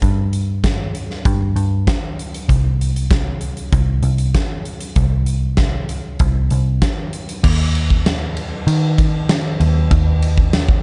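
This rock excerpt leans toward shoegaze and dream pop, with a dreamy, hazy mood at a straight 97 BPM in 4/4 and the key of C minor. A vintage electric bass, picked and foam-muted, plays a round, amped line between C2 and Eb3 throughout the 10.8 seconds. An acoustic arena drum kit shares the front of the mix, with a punchy kick, a fat snare, hi-hat, ride and crash cymbals, all set in a big room sound. The production is dark, with little reverb and a high end that tops out at 10.4 kHz. The music moves into a new section at 7.4 seconds and runs until the cut at 10.8 seconds.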